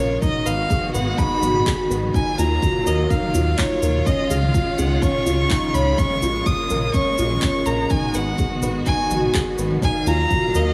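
Intimate and melancholic, this piano and strings electronica excerpt sets an up-front bowed violin melody with digital delay over sustained chords from a vibrato-rich chamber string section, a felt-muted upright piano riff with audible action noise and its own delay, a rumbling detuned saw bass pumping under sidechain and tube saturation, and a layered deep house kit of handclaps, shaker and toms alongside a deep electronic kick, inside a small, lightly reverberant room.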